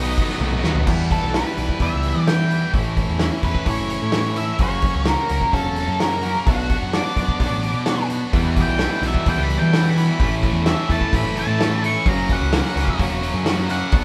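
A brief tonewheel organ with key click and slow rotary vibrato opens this dark, brooding quiet-loud alternative rock excerpt at 129 BPM in E dorian, alongside a bright high-gain distorted guitar riff, a tight distorted guitar in the background and a growling, round, overdriven bass, before a roomy acoustic drum kit with dark cymbals plays a fill into 0.9 seconds, where a clean, compressed semi-hollow guitar begins picking arpeggios beneath the fuzz-heavy octave-fuzz lead guitar's solo over Em, A, F# and Bm, and the tight distorted guitar returns at 8.3 seconds, all caught as a band playing live in one room.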